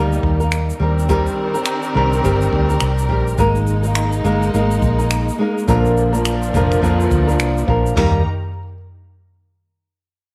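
Carefree and heartfelt, this acoustic pop excerpt moves with a gentle swing over a steady four-beat pulse. A dark, boxy flamenco guitar, fingerpicked and up front, carries the accompaniment, while a round, punchy muted electric bass with a vintage amped tone sits close beside it. Behind them a distant, lush string section holds sustained bowed chords, its expressive vibrato and portamento adding tenderness. A small-room brush kit enters at 0.1 seconds, bringing a boomy kick, dark cymbals, toms, shaker, finger snaps and a crash. The harmony travels from Eb through Cm7, Absus2 and Bb before landing back on Eb at 8.0 seconds as a new section begins, and the whole passage is set in a studio reverb.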